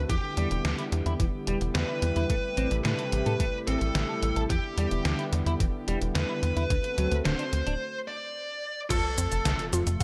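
A driving 109 BPM pulse in straight 4/4 opens this cinematic synthwave excerpt in E minor, with a thumpy electronic kick and a detuned 8-bit drum machine adding crash, hi-hat, shaker and a medium-tuned snare through gated reverb, while a tight, punchy sawtooth sequencer bass and a smooth analog pad, both sidechain pumping, carry the Em7, Am7 and D7 changes. A dark, high-gain lead guitar sings the melody through distortion and delay over a clean, fingered semi-hollow guitar riff bathed in analog chorus, and a nasal, wave-folded analog pluck arpeggiates briefly before a break at 7.8 seconds. At 8.9 seconds an impact lands on an F chord as the pluck returns, a mellow, airy lead touches a high A with vibrato, and a background sub drop rumbles under light digital ambience.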